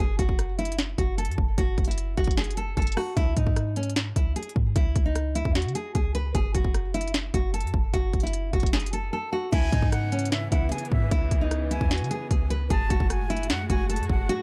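A bright, fingerpicked nylon-string guitar melody with audible finger squeak opens over a deep, boomy 808-style bass, joined almost at once by an up-front trap kit of hard-clipped kick, sharp snare, crisp hats, rim clicks and crash, laying down a dark, melancholic half-time hip hop and trap groove at 151 BPM in C# minor that mutes the drums briefly at 9.1 seconds before lush, bowed symphonic strings and a breathy, close-miked concert flute with delay arrive at 9.5 seconds, all within a small room ambience in this cut from a longer piece.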